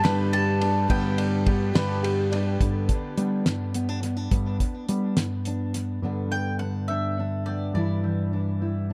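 A straight 6/8 feel carries this anthemic, uplifting indie folk excerpt, where thuddy, cloth-damped drums with a fat snare and a round, amped electric bass sit up front beneath a woody mandolin melody, a shimmering octave-doubled twelve-string, clear upright piano arpeggios and a barely audible felt-muted upright piano. At 2.6 seconds a full-bodied fingerpicked steel-string guitar takes over the accompaniment, and after the drums stop at 5.9 seconds, the bass, that guitar and the returning mandolin carry on in an echo-heavy mix, with dub echo trailing the mandolin and the guitar.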